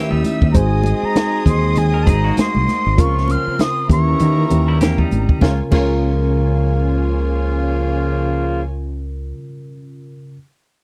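A bright, reedy jazz flute carries the airy melody over a lush 1970s-style soul groove with a swung 16th feel, backed by a punchy fingered electric bass, a dry cocktail drum kit with dark cymbals and a high-tuned snare, soft-handed congas in the background, a worn, slightly out-of-tune tine electric piano through phaser, a scooped semi-hollow guitar riff, smooth horn stabs in octaves and a distant bowed violin section, all recorded close and dry in this short excerpt.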